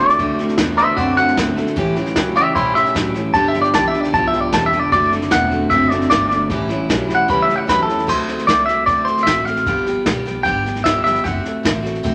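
Rockabilly excerpt with a rowdy, rollicking mood, where a twangy, up-front clean electric guitar solos over a slightly broken-up electric riff until 8.1 seconds, backed by a full-bodied picked dreadnought acoustic guitar, a thumpy gut-string upright bass in the background, and a dark, boomy brushed drum kit, all bathed in a large studio reverb.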